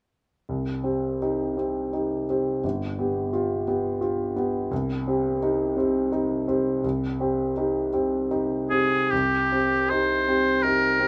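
Elegiac and yearning, this short excerpt of a romantic classical duo unfolds in a rubato 3/4 at 71-88 BPM in C minor, tuned to A4 = 444 Hz. The grand piano, clear and intimate with audible action noise and long sustain, carries the accompaniment from 0.5 seconds over a Cm, G7, Cm progression. At 8.7 seconds the bright, punchy oboe enters up front with light vibrato to sing the melody through to 11.1 seconds, set in a light reverb.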